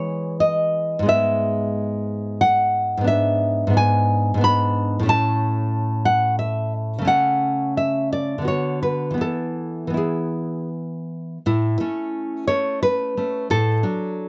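Close, detailed miking with light reverb captures a dark, up-front nylon-string guitar, fingerpicked with audible finger squeak, in this tender, nostalgic romantic excerpt for solo classical guitar in a flexible, rubato 3/4, its harmony settling toward A from 3.1 s before a new section opens at 11.5 s.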